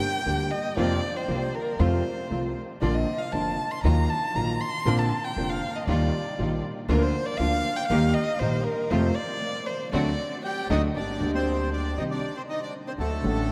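Rubato in 4/4 at around 118 BPM, this sultry, passionate tango excerpt in Bb major opens with an expressive bowed violin up front, singing with vibrato and portamento, joined at 0.3 seconds by a polished grand piano, a woody, thumpy pizzicato upright bass on gut strings, and biting, lush symphonic string stabs set in the background. The band hits an accent from 8.9 seconds, and at 10.4 seconds a reedy, close-miked bandoneon enters with the melody, dark and full. A vast cathedral reverb surrounds the passage with a long, echoing wash.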